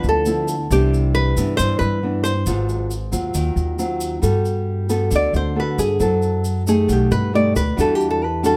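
Sunny and romantic, this short bossa nova excerpt pairs a fingerpicked, classical-toned nylon-string guitar melody, bathed in plate reverb, with a second nylon-string guitar that thumb-plucks small chords, finger squeaks and all. Underneath, a woody, thumpy pizzicato upright bass sits up front while a grainy, bright tube shaker adds a faint live-room shimmer. Lush jazz harmonies move from rootless G13 through Ab6 toward F#m7b5 and B7alt, and the melody guitar steps out for a solo from 4.2 seconds, all under a light reverb.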